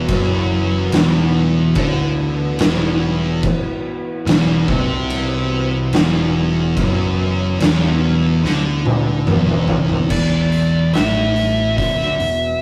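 A straight 4/4 pulse at 72 BPM drives this ominous, hypnotic stoner and doom metal passage, cut from a longer piece and built around an E5 chord. An oversized, low-tuned acoustic drum kit sits up front, its punchy kick, medium-tuned snare, hi-hat, crash and toms sounding dark, saturated and gritty in a bright stone room, with a fill from 8.4 to 10.1 seconds. Two thick fuzz guitars play the picked, distorted riff together, one warm and up front, the other darker in the background. An overdriven picked electric bass adds a bright, growly, amped low end, while an analog drone in the background holds evolving sustained chords with slow attacks, long releases and chorus, blending sawtooth, pulse and triangle tones with pulse-width and ring modulation. At 10.1 seconds a compressed fuzz lead guitar enters up front with a short wah-coloured distorted melody, all inside a rough rehearsal-room recording with a wet booth ambience.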